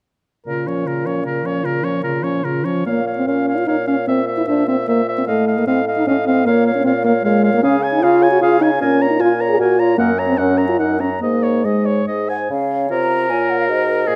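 An up-front, mellow French horn anchors the accompaniment in this stormy, dramatic excerpt from a quick classical-period wind quintet movement in 3/4 at 152 BPM, played with rubato and turning from Bb minor to Db major at 7.6 s, while a clear oboe with light vibrato carries the second line, a soft-attacked clarinet sits in the background, a distant, roomy bassoon holds the bass, and a hollow, airy silver flute with vibrato takes the melody from 12.3 s, captured with close, detailed microphones and light reverb.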